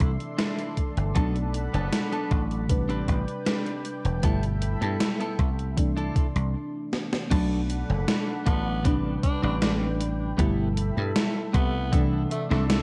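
A nostalgic, melancholic vaporwave groove at 78 BPM opens with a thumpy, tape-softened electronic kick and an up-front gated 80s drum machine with gritty snare, hi-hat and crash, while a punchy, bright thumbed slap bass, a round, dark FM electric piano with lush chorus and delay, a thick, warbling detuned unison pad, and a clean, compressed electric guitar riff cycle through C69, Bm7, Am11 and G69. After a short break and drum fill near 7.3 seconds, a raspy, edgy alto saxophone with vibrato takes the melody from 8.5 seconds, and a guitar fill closes this cut from a longer piece under light reverb.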